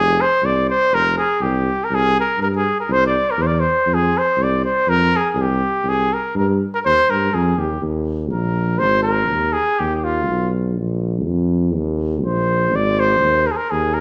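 A warm, classical-style trumpet carries the melody up front in this virtuosic, wild fragment of Balkan folk in 2/4, taking a solo from 7.8 s to the close at 14.0 s. Beneath it, a mellow tuba with light vibrato, also in a classical style and placed up front, holds down the bass throughout. The two play live together in one room, framed by a moderate large-studio reverb.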